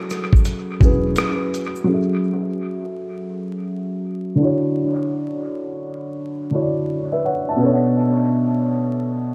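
Vinyl crackle and a moderate echo chamber reverb wrap this short, echo-heavy lo-fi hip hop clip in a hazy, reflective mood, carried by a swung sixteenth-note feel. A felt-muted upright piano sits up front throughout, its soft, boxy, intimate tone darkened by a low-pass filter and trailed by dub echo, and from 1.9 seconds a filter sweep runs over it as the harmony moves from F#m7 to F#m9, Dmaj7 and Bm7. A gritty, compressed sampler-style drum kit with a thumpy kick, hi-hat, rim click and shaker, re-recorded in a large room, plays only near the start alongside a grainy, bright egg shaker kept close and dry in the background, both touched with dub echo. Also brief are a woody pizzicato upright bass sounding E1 in the background and a clean, picked hollow-body jazz guitar melody that is barely audible in the opening moments. Once these fall away, the piano carries on alone until 9.3 seconds.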